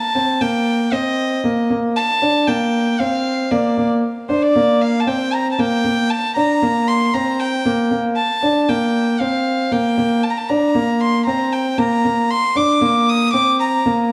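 A rich, pure violin played by one player, bowed sul tasto with a soft attack and a floating tone, carries the melody up front over a dark, boxy concert grand piano riff with deep bass and long sustain, moving from Cm7 to Bbsus2 in this hypnotic, melancholic 116 BPM electronica excerpt of 14.1 seconds, set in a moderate echo-chamber reverb with small-room ambience.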